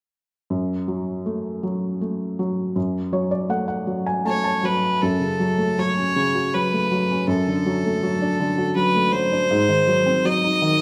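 A felt-muted upright piano opens at 0.5 s with soft, mellow, intimate chords in F# minor, adding a short-sustained fill at 2.8 s, before a single bowed fiddle, bright and earthy yet distant, takes up the melody at 4.3 s in this wistful, gentle children's lullaby in a rubato 3/4 at 80 BPM, cut from a longer piece, with both parts up front in a moderate recital-hall reverb.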